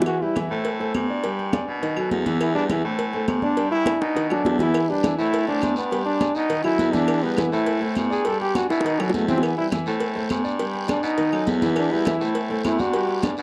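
A dry, close 1970s-style studio sound with a touch of small-room ambience frames this driving, danceable salsa excerpt at 205 BPM in E minor, where a brilliant, up-front trombone with vibrato and tape echo carries the solo melody from 2.4 s over a bright grand piano with audible action noise and long sustain, a raspy, gritty baritone saxophone holding down the bass, tight high-tuned bongos and cowbell, ringing congas played with soft hands, compressed agogo bells and timbales and woody claves in the background, and a guiro joining at 4.7 s, with drum fills around 3.9 s and 8.7 s.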